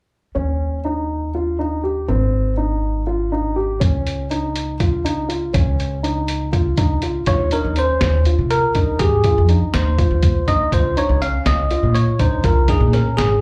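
Progressive instrumental band music in a driving, bright 7/8, cut from a longer piece and heard as a live gig through the venue's PA, with club reverb and lossy artefacts. A dark, boxy baby grand piano plays arpeggios with slapback echo and audible action noise over a woody, gut-strung upright bass, and a muffled, pitched-down, overdriven sampler-style drum kit with a thumpy kick and fat snare joins at 3.8 seconds. At 7.3 seconds a bell-like tine electric piano takes the melody up front, clean with subtle chorus and its own slapback echo.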